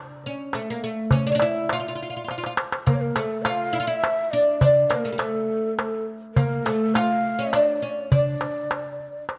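The bright, woody oud carries the melody up front in this hypnotic, melancholic Arabic maqam excerpt in D nahawand at 103 BPM in 3/4, joined by a crisp, close darbuka that plays a fill from 2.3 to 2.9 seconds before a breathy low ney with vibrato enters at 2.9 seconds on a softer second line, all under light reverb.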